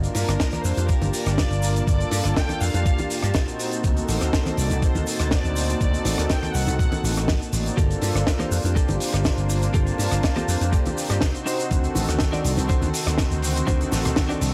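A sleek, groovy nu-disco excerpt in G minor at 122 BPM opens on a warbling, detuned analog pad and a lush string machine pumping against a thumpy electronic kick, with a round, punchy slap bass up front, a dry cocktail kit with a high-tuned snare, bongos, cabasa and congas, and a dark, reedy violin section with analog delay that gives way at 7.8 seconds to a bright, clean picked electric guitar riff over Gm9 and D7b9 chords in a gritty small room.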